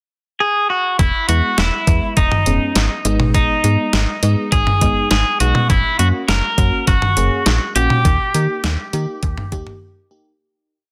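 A steady, straight 4/4 drum-machine beat at 102 BPM drives this short, cool and melancholic synth-pop piece, its detuned 8-bit kit sitting up front with a thumpy kick, a medium-tuned snare, hi-hat and syncopated toms that carry a tape-warm, small-room character. Before the beat arrives, a slightly broken-up electric guitar opens the pickup bar at 0.4 seconds, playing a twangy, picked motif-based melody up front. At 1.0 seconds the drums and a snappy, sequenced FM bass with a metallic attack join as the verse moves through E, G#m, F# and D#. A lush, dreamy FM electric piano with a soft pad layer adds off-beat triad chords further back, colored by chorus and phaser. The mix has light reverb and a dense, heavily limited modern master, tuned to A4 = 437 Hz, and the piece fades out from 8.1 seconds into a brief closing break.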